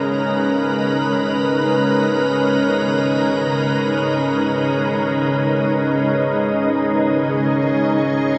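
A bright, organ-like pad sits up front with sustained, evolving chords under ensemble chorus, over a very quiet, nasal bowed-like drone with vibrato and a glassy, beating glass harmonica in the background, forming a serene, spacious ambient excerpt in free time on a G#m/C# chord, all bathed in a huge, wet reverb.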